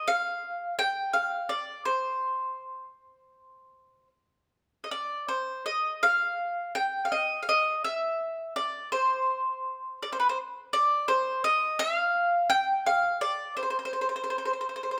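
A solo mandolin carries this fado fragment, its double strings ringing with a woody, picked tone placed up front and heard through close, detailed microphones. The playing is rubato in C minor, with the pulse drifting loosely between 73 and 86 BPM in 4/4, giving the line a longing, passionate cast. The melody stays in a narrow band from B4 to G5, and the mandolin plays alone for the full 15 seconds. A light reverb surrounds the acoustic instrument with a touch of air. The opening phrase returns at 4.9 seconds, restating the same material before the cut from the longer piece.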